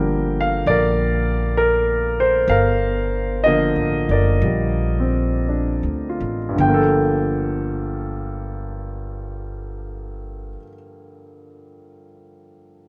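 Melancholic and intimate, this brief jazz ballad in G minor drifts at 52-69 BPM with a gentle swing, slowing over its first 6.6 seconds before settling from Gm7 into Gm9. A warm concert grand piano with deep bass and a natural, up-front presence carries the accompaniment until 12.9 seconds. An upright bass, plucked with a woody, growly tone from steel strings, sits beneath it and falls away at 10.5 seconds, all in a light reverb.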